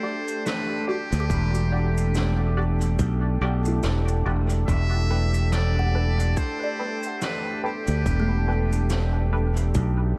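This brief ambient dub excerpt opens at once with a muted trumpet melody, thin and buzzy with light vibrato, sounding distant and roomy as dub echo trails its phrases. Beneath it a smooth, detuned sawtooth pad holds an Em9 chord with a slow attack and chorus. A woody kalimba plucks airy arpeggios through analog delay in the background. A filtered chord stab, shaped by phaser, lush chorus and its own dub echo, adds short, evolving hits further back. Shaker and a high-tuned, gritty snare arrive at 0.3 seconds, then a bright, growly fingered electric bass takes the front of the mix at 1.1 seconds, followed by a tight, tape-toned electronic kick. The mood is deep and spacious, with a gentle swing on the sixteenths and a light small-room ambience around an echo-heavy mix.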